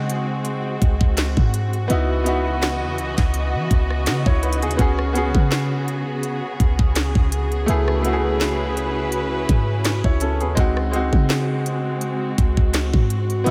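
A dreamy, reverb-soaked mix frames this sensual, late-night contemporary R&B excerpt in C# minor, moving at 83 BPM with a light sixteenth-note swing over chords that hover on a C# pedal, from C#m11 through C#7sus4 and F#m11/C#. An intimate baby grand piano, its action noise audible, and a bowed string section playing soft-attack sul tasto chords with vibrato share the accompaniment, while a clean, boomy sine-like 808 bass with a fast, decaying attack sits underneath. Up front, an electronic trap kit enters at 0.1 seconds with a knocking kick, sharp snare, rim clicks and crisp hi-hats.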